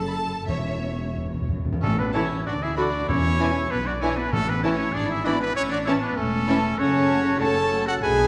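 A wet scoring-stage reverb surrounds this quick, spirited and graceful classical-period movement for symphony orchestra, cut from a longer piece in A major at 96 BPM in 2/4 with a rubato feel. The strings play throughout: a rich, focused violin section carries the melody in the background while a second, very quiet violin section adds an intimate sul tasto line, and lush violas supply smooth accompaniment. Beneath them, dark double basses with expressive portamento and even cellos share the bass. Close, dry timpani on medium mallets enter at 0.5 seconds and add a brief fill before the music turns toward an A major chord at 1.8 seconds. At that point a clear solo oboe takes up a second line, distant, roomy French horns hold sustained chords, and an up-front trumpet of mellow tone punctuates with stabs. From 2.1 seconds an airy flute section, a very quiet clarinet and a distant bassoon fill out the woodwinds as the harmony moves through E7 and back to A before settling on F#m.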